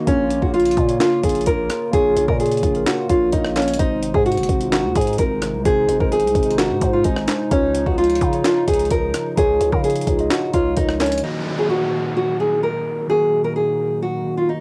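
A gritty, compressed breakbeat sampler-style drum kit of thumpy kick, high-tuned snare, rim click, hi-hat and handclaps drives this eerie, menacing half-time trap excerpt at 129 BPM in Eb dorian, with a growling, buzzy 808-style bass beneath an up-front fingerpicked nylon-string guitar melody with audible finger squeak, a clean tine electric piano and a hollow, flute-like chorused pad in the background, the guitar, piano, pad and drums all colored by cassette tape, until the drums and bass drop out at 11.2 seconds for an electronic downlifter over an Ebm chord.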